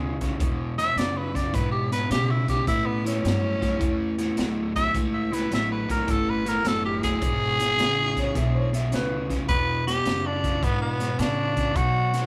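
Swung eighths drive this swaggering, rollicking electric blues shuffle at 106 BPM in E mixolydian, cut from a longer piece, where an overdriven semi-hollow guitar riff and a thumpy pizzicato upright bass sit under a crunchy, saturated breakbeat kit that enters at 0.2 s, a raspy, growling tenor saxophone with digital delay carries the up-front melody from 0.8 s, and a brilliant upright piano adds a brief second line at the very start and again at 8.2 s, with the band playing live in one room under short studio reverb.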